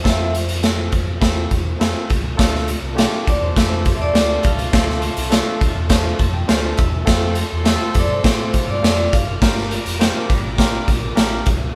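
Recorded live by a band in one room with light reverb, this passionate, urgent stretch of uptempo 1960s-style soul moves at 102 BPM in D minor, tuned to A4 = 437 Hz. Gritty, punchy garage drums sit up front over a dark, round fingered electric bass, while a barky, lightly overdriven tine electric piano plays accompaniment and adds a fill at 5.9 seconds, and a ringing vibraphone with slow motor vibrato carries the melody in the background. From 2.4 seconds a very quiet, reedy violin section with light vibrato joins, followed by a bell-like glockenspiel and a tight, clear horn section doubled in octaves, as the chords pass from Fmaj7 to Dm, F and Gm.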